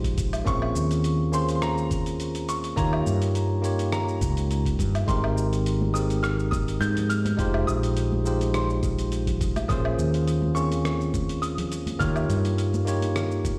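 A bell-like tine electric piano with delay and a round, dark fretless bass sit up front from the start, over a gritty, overdriven sampler-style kit of hi-hat, rim click, shaker and woodblock and a thumpy electronic kick, setting a wistful sunset chillout groove at 104 BPM with a light swing on the sixteenths. At 0.5 seconds a brilliant, polished grand piano enters high in the register with tape echo and short sustain, floating over a Bbm9, Eb9, Abmaj9 and Fm9 progression. Ringing congas join in the background at 5.8 seconds, and the whole passage carries the stone-room reverb of a big sound system playing in a bare space.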